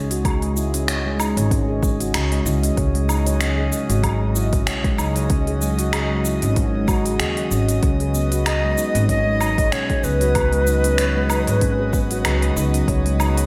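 A wet, reverberant stage with a big arena sound surrounds this earthy, hypnotic piece of organic downtempo, cut from a longer work and moving at 95 BPM in 4/4 with a gentle 16th-note swing. An airy, breathy pad of detuned sawtooth and triangle tones with a noise layer holds soft, slow-blooming chords with long release, treated with chorus and a sidechain pump. A ringing, meditative stainless-steel handpan plays arpeggios with sharp finger strokes, its notes carried by delay and slapback echo. Up front, a woody, growly pizzicato upright bass on steel strings gains tube saturation. An overdriven electronic kit of finger snaps, smooth hi-hat, shaker and woodblock is paired with a deep, overdriven electronic kick, both re-recorded in a large room. The harmony rests on C#5 before moving to B at 7.8 seconds, and at 8.5 seconds a warm cedar flute enters with a crisp, chiffy attack and vibrato, singing a short phrase through delay and slapback echo.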